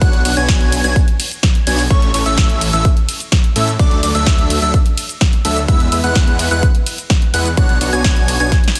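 An overdriven, punchy electronic kick sits up front in this euphoric, anthemic festival progressive house excerpt at 127 BPM in A major, joined by a house kit of snare, hi-hat, ride cymbal and shaker bathed in studio reverb, with a drum fill at 8.5 seconds. Huge, lush supersaw chords with a moving notch and a thick, chorused detuned saw bass pump under sidechain, while a catchy, bright plucky unison lead plays high-register arpeggios with a filter sweep and tape echo. The chords cycle Bmadd9, A, D and E in a dense, heavily limited modern master with digital ambience.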